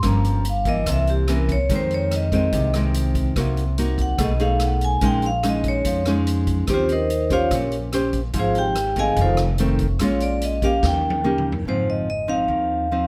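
A light reverb surrounds this short bossa nova excerpt, relaxed and breezy, at 144 BPM in 4/4 with a straight feel in Ab major. Up front, the vibraphone carries the melody as a solo from 0.0 to 11.7 seconds, its medium hard mallets drawing a metallic, ringing tone with the motor off, close-miked and full, set in a plate reverb. Beside it, the fingerpicked nylon-string guitar supplies a full-bodied, classical accompaniment, with an audible finger squeak. Underneath, the pizzicato upright bass sounds woody and growly on steel strings. Further back, a swinging big-band drum kit recorded in a big room offers a natural blend of hi-hat, rim click, a medium-tuned snare, toms and a punchy kick, playing a fill from 10.8 seconds and dropping out at 11.6 seconds. The harmony moves through jazzy changes such as Gm7b5, C7b9, Bbm7 and Eb13 before settling on Ab6 as a new section begins at 11.7 seconds.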